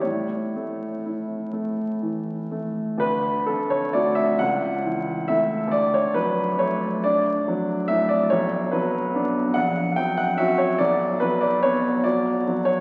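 A clear baby grand piano plays alone and up front, its natural tone carrying a long sustain through this short fragment of a romantic classical nocturne. The mood is dreamy and tender, moving in 6/8 with a free, rubato feel that lets each phrase breathe. A brief opening phrase gives way at 3.0 seconds to a return of the same material, which runs until the fragment breaks off at 12.8 seconds. The harmony drifts from A to D and A/C#, then darkens toward Bm and F#/A# before settling on a bare B5, with the piano ranging from A#1 in the bass up to G5. A wet concert hall reverb surrounds the instrument, while the crackle of a very old 78 rpm record lends the sound an aged character.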